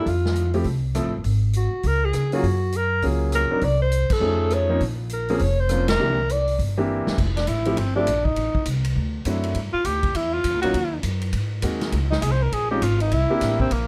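A dark, lightly reverberant production frames this playful small-group swing and bop excerpt at a brisk 202 BPM, where a breathy alto saxophone with vibrato and subtone carries the melody until 6.6 seconds over clear grand piano with audible action noise, a woody, growly pizzicato upright bass, and a natural big-room drum kit with a punchy kick and medium-tuned snare. Band accents and a drum fill punctuate the opening, then a mellow, whispered tenor saxophone takes an intimate solo from 7.2 seconds, with soft attacks and scooped notes over changes that begin on Fmaj9 and close on C7.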